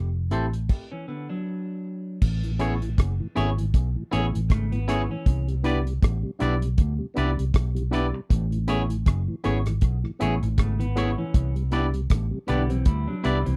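Sweet and smooth, this lovers rock reggae fragment in A major moves at 79 BPM with a swung sixteenth feel. A round, foam-muted fingered bass sits up front beside a cloth-damped, thuddy drum kit of tight kick, hi-hat, rim click and crash, while a barky, gritty overdriven tine electric piano with tape echo and twangy picked electric guitar stabs fill the middle. A clean semi-hollow guitar adds spring-reverbed arpeggios, and after a brief stop from 0.7 to 2.2 seconds a mellow tonewheel organ with chorus vibrato and slow rotary speaker murmurs in the background. The dry mix cycles through Fmaj7, Amaj7 and Cmaj9 chords.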